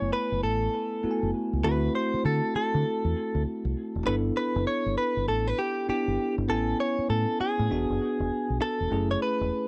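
Sixteenth notes carry a moderate swing over a steady 4/4 pulse, giving this short R&B clip a bouncy, confident new jack swing strut. A clean electric guitar carries the melody, recorded direct with a picked, compressed, scooped tone that sits up front and carries a touch of cassette tape grit. Beneath it, a tine electric piano supplies bright, bell-like accompaniment, also colored by cassette tape. A deep dub fingered electric bass anchors the low end with a dark, round, punchy sound, stopping at 9.5 seconds just before the other two parts finish. The harmony moves from F#m11 through D9, G6, Amaj7 and E7 before landing on F#m7 at 8.9 seconds. It sounds like a dry home recording on cassette, close and intimate with little room around it.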